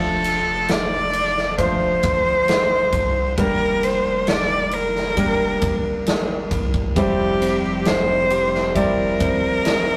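A slow, straight four-beat pulse carries this tender, emotional pop ballad fragment, with a huge arena drum kit of punchy kick, medium-tuned snare and ride cymbal sitting up front in a big, natural room. A saturated sub bass holds down a deep, thick sine tone with a fast attack and long sustain, while a grand piano supplies clear, intimate accompaniment, its action noise audible in a polished, present sound. Over them a single close-miked cello sings the melody, bowed smooth and even with a rich vibrato. A direct-recorded clean electric guitar adds bright, twangy, compressed picked arpeggios, heard briefly at the start and again from 7.0 seconds. The harmony moves from Dm/F to Gm/F and then C/F over a steady F in the bass, all captured in a rough rehearsal-room recording with tube saturation and moderate small-room reverb.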